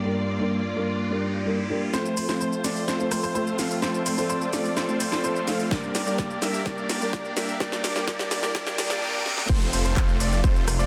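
Uplifting and euphoric, this short cut from a longer festival progressive house track builds from a hushed opening toward a drop. It starts with a soft, felt-muted upright piano, dark and boxy with tape echo and sidechain pumping, over a distant symphonic string section carrying sustained chords with vibrato and a touch of 12-bit sampler grit, while a riser and other background effects gather beneath. At 1.9 seconds a bright, brilliant baby grand enters with arpeggios and audible action noise. It is joined by huge, lush detuned supersaw chords whose filter sweeps through the build-up, and by a house drum kit with a cracking snare, metallic hats, handclaps and shaker that rolls into a long fill. A punchy, up-front electronic kick arrives at 5.7 seconds as the harmony moves between G minor and F, and a reverse cymbal pulls the tension tight just before the drop. At 9.5 seconds a thick, menacing detuned saw bass lands on a low F, saturated and beating, under a dense, heavily limited master bathed in recital hall reverb.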